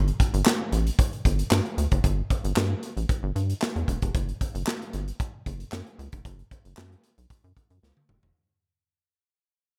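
A rubbery, hollow square-wave bass opens this danceable, late-night early-eighties boogie funk excerpt, joined at 0.1 seconds by an up-front studio drum kit of punchy kick, medium-tuned snare, hi-hat, toms and handclaps treated with gated reverb, the whole excerpt fading out throughout in a bright 1980s-style digital mix with light reverb as a drum fill arrives at 7.8 seconds.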